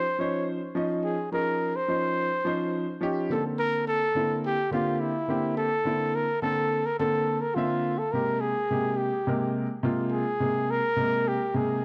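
A straight 4/4 jazz groove at 106 BPM carries a soaring, funky mood through this short fragment of a longer piece, moving through Dbmaj9, Bbmaj9 and Abmaj9 chords. Up front, a mellow trumpet sings the melody with light vibrato, a soft attack and scooped notes, trailed by tape echo. A clear, worn concert grand piano with deep bass and long sustain accompanies throughout, all captured in a dry, close 1970s-style studio sound with a touch of small-room reverb.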